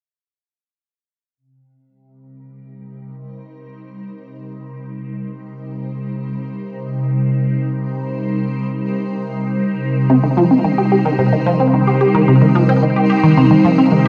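In this expansive, mysterious ambient fragment from a longer piece, a morphing, ring-modulated wavetable pad fades in to hold sustained Cm7 chords with ensemble chorus, reverb and phaser, and a squelchy, resonant sawtooth pluck joins it up front at 10.1 seconds with a riff through phaser and delay, all captured as a home cassette recording in a wet, close booth.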